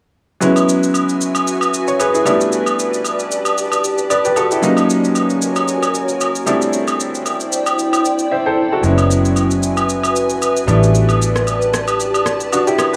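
A gently swung sixteenth-note groove in 4/4 drives this late-night, soulful amapiano clip, cut from a longer piece. Produced electronic shaker and rim click keep time, and vintage, band-limited agogo bells add an acoustic touch. A clear, worn grand piano sits up front with short-sustained accompaniment chords. Behind it, a glassy FM pad with slow attack and long release holds ethereal, mellow suspended ninth chords, shimmering through ensemble chorus, tremolo and its own reverb. The drums drop out briefly at 8.3 s, and at 8.8 s a round, dark, foam-muted fingered electric bass enters, direct and amped. A lush hall reverb and studio ambience frame the sound in a small room.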